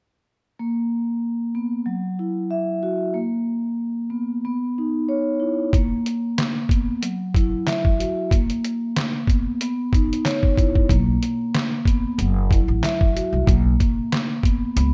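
Swung at 93 BPM in 4/4, this nostalgic, soulful boom-bap hip-hop excerpt opens on a mellow, ringing vibraphone with a cassette-tape tint, joined at 5.7 seconds by a muffled, pitched-down sampler-style kit of thumpy kick, snare, hi-hat and handclaps, and at 10.9 seconds by a woody, growly pizzicato upright bass, all moving through Esus2/F#, C#m9 and F#7(no3) in a dark production with light reverb.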